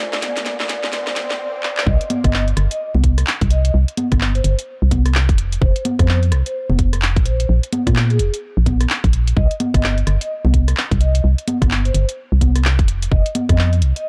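A dark, dry, high-passed mix opens this bouncy, skippy two-step UK garage excerpt in C minor at 128 BPM with a 16th-note swing, where a background riser and a cloudy granular pad with sidechain pumping frame a short build-up and drum fill over a Bb9 chord. At 1.9 s the drop arrives, bringing a tight electronic kick and a hollow, organ-like FM bass pushed up front beneath the up-front garage kit of cracking snare, handclaps, rim clicks, congas and warm hi-hats. Throughout, a soft-mallet vibraphone carries the melody with a metallic ring, fast motor vibrato and digital delay, as the harmony moves through C5, F5 and Bb5 power chords.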